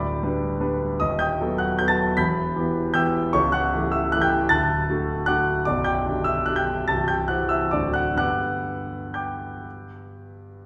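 A clear concert grand piano plays alone from the first moment, shaping an elegant, graceful classical waltz in G major in 3/4 with a rubato feel that moves between 121 and 161 BPM. Its natural tone pairs a deep bass with long sustain across a range from B0 to B6, winding through chords such as B7/D#, Em and A7/C# before settling back on G at 8.2 seconds. The instrument sits up front, yet the listening position lies further back in a wet recital hall whose reverb lingers for 1.4 seconds, in a short section cut from a longer piece.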